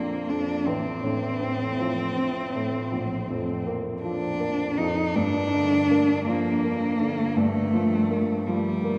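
Romantic classical music for cello and grand piano, tender and lyrical, unfolds in Bb major at a slow, rubato 54 BPM in 12/8, as a single rich cello sings the bowed melody up front with vibrato, soft attacks and expressive portamento over the clear, present grand piano accompaniment, both parts sounding throughout the 9-second excerpt within a wet cathedral reverb heard from further back in the room.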